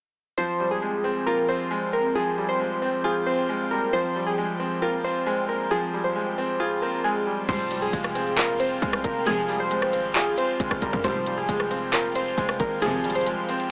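Heard through a small-speaker sound with light reverb, this eerie, melancholic trap hip hop excerpt in F minor moves at 135 BPM with a half-time feel. From 0.4 seconds, warbly, nostalgic lo-fi synth keys carry the melody up front with chorus and tape echo over a clear, worn grand piano on an opening Fmadd9, and at 0.8 seconds an airy, breathy pad enters to sustain chords beneath them. At 7.5 seconds the trap kit arrives with a knocking kick, crisp hats, handclaps, rim clicks and crash cymbal, joined by a punchy, heavy 808-style bass and veiled, muted string stabs, bowed with vibrato, sitting in the background.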